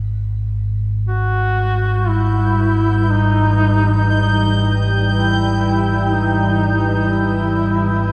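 Unmetered and floating in free time, this brief excerpt of dark ambient drone feels cavernous and desolate. A deep, menacing rumbling drone sits up front from the opening moment, its slow-attack sawtooth and triangle tones sustaining low in the register with their own reverb. At 1.1 s the harmony settles onto an Em chord as a duduk enters with the solo melody, its soft attack, vibrato and scooped pitches giving it a folk-style voice that also sits up front, trailed by shimmer reverb and a diffuse ambient delay. At the same moment a high, brilliant bubbling texture appears, its resonant, detuned sawtooth stepping through random filter changes under chorus and shimmer. From 2.0 s a moody, full-bodied analog pad fills the middle with sustained chords, detuned and thickened by a sub octave, chorus and shimmer reverb. The whole piece is bathed in a cathedral-sized reverb with a 4.9-second decay.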